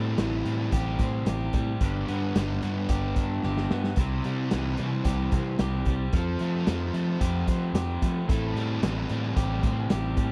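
Bittersweet and restless, this indie rock excerpt pairs two picked, overdriven electric guitar riffs over chords moving from Am7 through G, C and Fadd9: one crunchy and bright, the other sludgy and run through analog chorus and tape echo. A punchy, amped electric bass holds the low end, and a raw garage drum kit of hi-hat, punchy kick and medium-tuned snare, gritty and saturated with a rolled-off top, comes in at 0.2 seconds and plays a fill from 3.4 to 4.0 seconds. The sound is dry and close, like a 1970s studio recording with little reverb.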